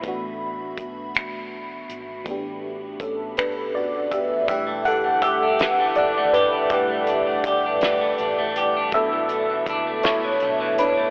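Soaked in a huge ambient reverb with a telephone-like tint, this dreamy, late-night slow six-eight R&B fragment sets a lush, chorused and phased FM electric piano with a soft pad layer up front over a round, foam-muted vintage fingered bass in the background and a cloth-damped, thuddy drum kit of finger snaps, hi-hat, tight kick and fat snare, until at 4.5 seconds the electric piano moves into a sultry solo while a clean, picked electric guitar with harmonic tremolo enters as a second line.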